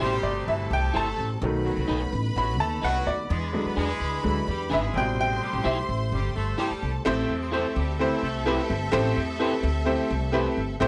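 Driving and passionate, this soul excerpt moves at 128 BPM in A dorian, with a bright, brilliant upright piano taking a solo for the first 7.1 seconds over a woody, growly pizzicato upright bass up front and a picked electric guitar at the edge of break-up adding stabs through ensemble chorus. Lush bowed strings and a distant, roomy horn section carry a second line in plate reverb, the horns stopping at 8.7 seconds, while a very quiet, mellow tonewheel organ with fast rotary speaker holds sustained chords beneath. The harmony runs from Am7 through B7 and E7 back to Am7, and this fragment is cut from a longer piece.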